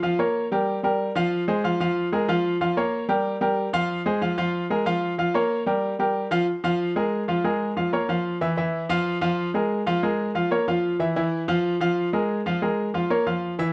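A clear grand piano plays alone in this fiery, passionate Latin piece at a brisk 186 BPM in straight 4/4, its short-sustained notes sitting up front and ranging from E3 to F5. The opening cycles through Gm7b5, Fsus24, Fm and Bb5, and at 6.5 seconds a second section alternates Bb5 and Bbm/F with brief passages where the chords drop away. A moderate studio reverb and a dark production frame this short piece, which is cut from a longer work.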